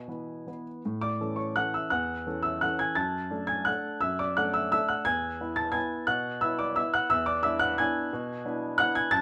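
A warm, woody upright piano plays alone from the start, its action noise audible and its sound intimate and up front in light reverb, shaping a playful, graceful classical waltz in 3/4 with uneven, rubato beats across a range from E2 to A6 in this short cut from a longer piece.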